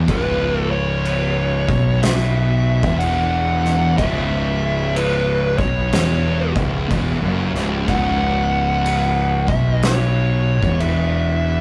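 A rough rehearsal-room sound with tube saturation and moderate reverb frames this sludgy, heavy stoner and doom metal excerpt in a swung 4/4, where two thick, dark fuzz guitars pick a low riff in the background beneath a growly, overdriven fingered electric bass up front, a compressed, distorted fuzz lead guitar carries the melody, and an oversized low-tuned acoustic drum kit adds a punchy kick, a fat snare and dark crash cymbal.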